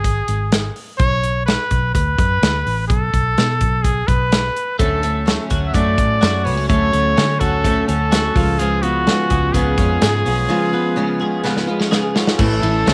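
Wistful and restless, this brief cut from a longer jangly indie pop piece moves at 126 BPM in a straight 4/4. A clear, up-front trumpet carries the melody from the start, its smooth top and vibrato touched by a slapback echo, over a dark, round, foam-muted electric bass and a modern studio drum kit with a punchy kick, a medium-tuned snare, hi-hat, ride and crash. At 4.8 seconds, as the harmony moves from B7(no3) to Dmaj7, a woody picked steel-string acoustic guitar with old strings joins the accompaniment alongside a compressed twelve-string electric guitar playing arpeggios through analog chorus. The chords then shift to C#7 before a drum fill from 11.4 seconds leads into an A chord. Light reverb and small room ambience surround the whole.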